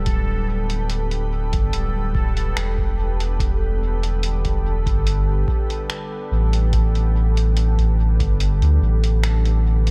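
Ambient dub at a slow 72 BPM in straight 4/4, this short cut from a longer piece feels deep and hazy, resting on a G/D chord. Up front, a round sine sub bass holds sustained low notes with a fast attack, while a soft organ-like pad of detuned sine tones sustains chords, its pure, calm, bright tone carried by ensemble chorus and built-in reverb. A bubbling sawtooth texture with resonant, random filter steps hovers on a single high note, with a soft attack, chorus and reverb. An analog-style electronic kick sits in the background until it drops out at 8.4 seconds. A muffled, tape-warm sampler-style kit of finger snaps and hi-hat, compressed and treated with dub echo and small room ambience, runs to the end, and the whole mix sits in a digital ambience.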